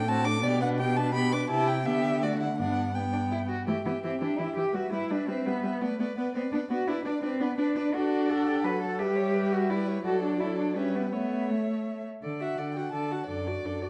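A full, smooth cello sits up front in this quick, cheerful classical-period movement for string quartet in triple time, laying down an even bass line from a distance with vibrato. Above it, a single dark-toned first violin carries the graceful melody, played close with a soft attack, expressive vibrato and sliding portamento. The second violin adds a focused inner line from further back, while a warm, close viola fills in the accompaniment with its own expressive slides and vibrato. All four bowed parts play together throughout, moving through an opening section, a longer middle passage beginning at 3.7 seconds, and a brief closing phrase from 12.2 seconds. A recital hall reverb gives the ensemble a generous, resonant space, and the excerpt is cut from a longer piece.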